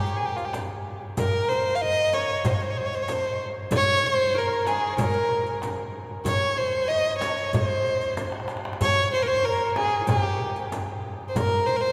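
A bowed violin, close and up front with vibrato, soft attacks and expressive portamento, carries a melancholic, longing melody in C maqam kurd from F4 to F5, while a bright-edged qanun with triple strings, played with fingerpicks, traces a second line in the background at 94 BPM in a straight 4/4. A deep, large clay-shell darbuka struck with hard hands sits at a distance beside a small, bright frame drum, and a riq with dark jingles stays close and dry behind them, with a drum fill at 8.2 seconds. A wet cathedral reverb gives this longer piece's fragment the lingering air of a church or concert hall.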